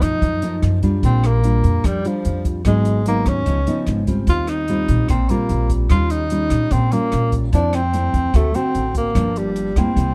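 Romantic and relaxed, this bossa nova excerpt sets a warm, subtoned, up-front tenor saxophone melody with soft attacks, scooped notes and a plate-reverb sheen over thumb-plucked classical nylon-string guitar, woody pizzicato upright bass and an airy small-room jazz kit of hi-hat, rim click and boomy kick, moving through lush extended chords from B7#11 to Gm7.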